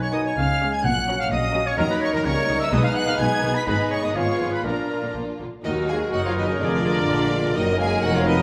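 Quick, urgent and dramatic classical-period orchestral music in 2/4 with a rubato feel, its rich, lush violin section carrying the high vibrato melody over a second violin line and a smooth viola accompaniment, while a clear, distant oboe, a pure straight-toned flute and a mellow clarinet add second lines, a tight French horn section holds sustained chords, focused double basses and even cellos bow the bass, and a dark, very quiet bassoon joins at 5.6 s, all set in a wet recital-hall reverb.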